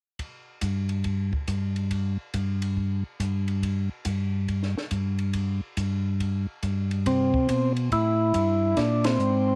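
A swung 4/4 groove opens this bluesy soul jazz organ trio fragment, cut from a longer piece, with a compact cocktail drum kit keeping time on hi-hat, ride, snare and kick from 0.2 seconds. The kit sounds acoustic and dark in a small room, its high-tuned snare and tight kick sitting low in the mix under a rolled-off top. A mellow tonewheel organ carries the bass line up front from 0.6 seconds, round and lightly overdriven with chorus vibrato. At 7.1 seconds a percussive tonewheel organ steps forward with a short melody, clean and full with second harmonic percussion, key click and a touch of tape echo, as the harmony moves to Cmaj7 and then Bb9. Both organs turn through a slow rotary speaker, and the band hits an accent near the end of this brief, swinging passage.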